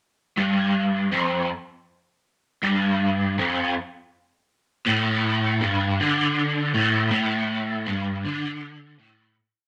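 A trippy, hazy rock piece in 6/8, built entirely on a lone overdriven electric guitar playing a picked single-note riff low in its range. The crunchy, double-tracked guitar sits up front, swirled through a rotary speaker and set in a moderately large studio reverb. It plays from 0.4 seconds and fades out from 7.1 to 9.4 seconds.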